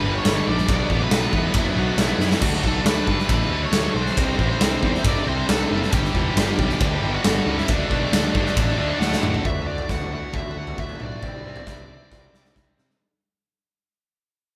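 Quiet-loud alternative rock in D major at 136 BPM, this anthemic, bittersweet passage is cut from a longer piece and moves through G, Bm, Dadd9 and Cadd9 with a straight 4/4 drive. A dark, high-gain lead guitar carries the melody from D4 to D6 over a wall of riffing guitars: a bright high-gain part kept very quiet, a scooped high-gain part sitting in the background, and a sludgy, double-tracked overdriven guitar. Beneath them, a punchy fuzz bass pushes the low end, while a huge arena drum kit sits up front with a punchy kick, medium-tuned snare, crash, ride and toms, rolling through fills at 2.2 seconds and again just before 9.5 seconds. A reedy tonewheel organ with key click and a slow rotary speaker is barely audible under the first 9.4 seconds. At 9.5 seconds the music shifts into a new section as it fades out. By then the scooped and sludgy guitars and organ have dropped away, and a twangy, slightly broken-up guitar through a small old amp has entered at 9.4 seconds with picked arpeggios. 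It plays alongside the lead, the quiet high-gain riff, bass and drums. The band sounds as if playing live in one room, touched by light reverb.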